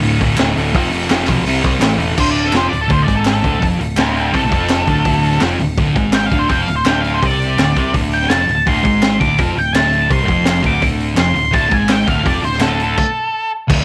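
A dark, up-front octave-fuzz lead guitar takes a solo from 2.2 s in this gritty, swaggering garage rock cut in D minor at 167 BPM. It ranges between F4 and D6 over a thick, double-tracked fuzz guitar riff. Beneath them, a growly, punchy picked electric bass and a crunchy breakbeat drum kit with a high-tuned snare, tight kick and rolled-off top drive the straight 4/4 feel, while crisp group handclaps sit in the background of a small room with light reverb, before a stop at 13.0 s.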